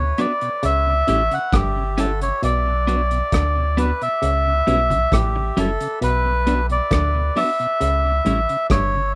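A rough home-demo mix with light reverb carries this hypnotic, meditative roots reggae fragment, cut from a longer piece and circling between Bm and C#dim. A reedy, breathy melodica sits up front with dub echo over a round, deep sub bass, while a mellow tonewheel organ with key click and slow rotary speaker hovers in the background. A clean, scooped electric guitar with its own dub echo, a muted, stringy clav riff through a combo amp from 0.6 seconds, and a saturated, gritty breakbeat kit with punchy kick, hi-hat and rim click fill out the groove.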